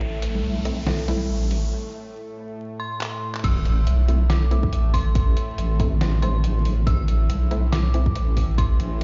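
Swung half-time 4/4 at 140 BPM drives this heavy, brooding deep dubstep excerpt in A minor: a riser, a brief break and a drum fill build to a drop at 3.4 seconds, where an impact hits and a layered electronic kick returns; beneath it all sits an up-front, chorused wobble bass that is deep and warm, while a nasal, bowed-like drone with built-in reverb sustains chords throughout, a muffled, pitched-down sampler-style kit of snare, hi-hat, handclaps and crash ticks behind, and thick-skinned congas appear only briefly at the start; muted, mellow dub chord stabs with echo surface in the background, and an eerie, inharmonic FM bell with tremolo and echo enters at 2.8 seconds, all heard as if through a big sound system in a bare room, with large studio reverb, vinyl crackle and a dull, rolled-off top.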